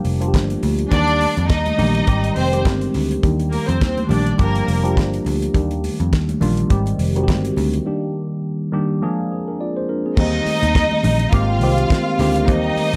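Lightly reverberant with a small-room ambience, this danceable, glamorous disco cut pairs a worn, slightly out-of-tune tine electric piano through a phaser with a dry, damped 70s drum kit whose fat snare and tight kick sit up front, a dark, round picked electric bass, very quiet high-tuned congas, and a lush, bowed studio string section that enters at 0.9 seconds, drops out at 4.9 seconds and returns at 10.2 seconds over a swung groove.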